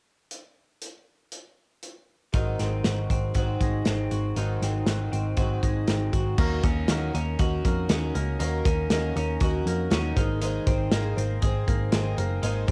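A lo-fi cassette home recording with light reverb opens on a punchy, up-front studio drum kit playing alone, then at 2.3 seconds a dark, foam-muted picked bass, a shimmering, boxy twelve-string acoustic guitar and a bright, twangy twelve-string electric guitar with analog delay join in, giving this restless, wistful jangly indie pop cut a ringing drive over Ab7, Ebm7 and Abadd9 chords.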